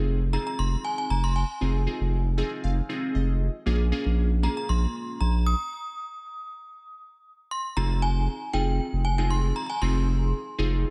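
A straight 4/4 pulse at 117 BPM drives this confident dance-pop fragment in F minor, cut from a longer piece. A deep, saturated sub bass sits up front from the start, thick and sustained under chords that move from Fm7 to Bbm7. Glassy digital keys with chorus and phaser supply the accompaniment, their bright, decaying tones colored by a filter sweep, and they add a fill between 2.1 and 3.7 seconds. Above them, an FM synth chime carries the melody high in the register, its inharmonic, ringing notes spread by ensemble chorus and trailed by dub echo. A stop falls from 5.7 to 7.8 seconds over a chordless stretch before the music returns to Fm7 for a new section. Light reverb and a digital ambience give the echo-heavy mix its spacious sheen.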